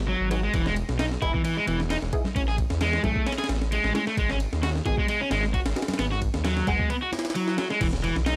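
A thick, menacing detuned saw bass with tube saturation drives this energetic, funky breakbeat cut at 132 BPM in G# phrygian, joined up front by a crunchy overdriven guitar riff with analog delay and a compressed, sampler-style drum kit with a thumpy kick and high-tuned snare, while muted filtered dub chord stabs with phaser sit in the background, very quiet ringing congas enter at 1.3 seconds, and a very quiet electronic swell and impact closes from 7.2 seconds, all in a dry, gritty recording dusted with vinyl crackle.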